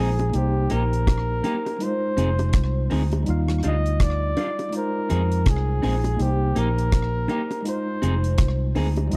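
A breathy, whispered flugelhorn with light vibrato and tape echo carries the melody over a tender, smooth lovers rock reggae groove at 82 BPM, alongside a worn, slightly out-of-tune tine electric piano with overdrive and slapback echo, twangy guitar stabs through a small old amp bathed in spring reverb, a dark, round, foam-muted bass and a deep, dry drum kit with a tight kick both up front, and soft-handed, low-tuned bongos in the background, as the harmony moves through Cm7, Fm7 and Ebmaj9 in a close 1970s-style studio sound.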